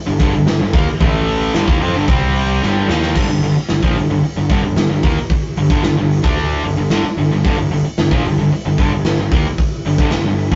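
A rough rehearsal-room recording with tube saturation, light reverb and a dulled top end carries this aggressive, heavy hard rock excerpt in G minor at 112 BPM, where an up-front overdriven electric guitar and a very quiet, compressed distorted guitar play picked riffs over a punchy, fuzz-laden picked bass and a big acoustic drum kit with bright cymbals in a stone room, whose fill from 2.6 seconds leads into a new section at 3.2 seconds.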